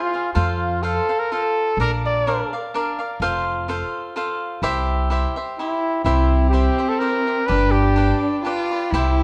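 A crisp, picked cavaquinho and a clear, classically styled trumpet with slapback echo open this romantic, proud mariachi excerpt in F major, moving through F, Bb, C and G in a swung 3/4 at 126 BPM. A woody, growly pizzicato upright bass enters at 0.4 seconds, and the trumpet returns at 5.6 seconds before a single bowed violin, heard only for an instant at the very start, comes back at 6.1 seconds with vibrato and expressive portamento. The production is dark with light reverb, keeping the trumpet, bright cavaquinho and thumpy bass up front.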